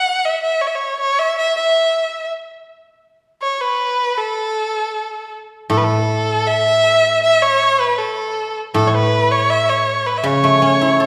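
Graceful and festive, this short piece of Chinese traditional music moves at 80 BPM in 2/4 with a rubato feel, set in the A gong mode and tuned to A4 = 437 Hz. A single bowed erhu carries the melody from the start, its clear, smooth tone sitting up front and colored by vibrato and portamento across a range from A4 to F#5. At 5.7 seconds the guzheng enters in accompaniment, plucked with fingerpicks, its silvery, ringing acoustic voice spanning A2 to A4 and also placed up front. The erhu's even line stays a touch louder than the guzheng as the two carry on together to the close at 11.1 seconds. A wet recital hall reverb with a 1.7-second decay surrounds them, and the listener seems to hear from further back in the room in this fragment cut from a longer piece.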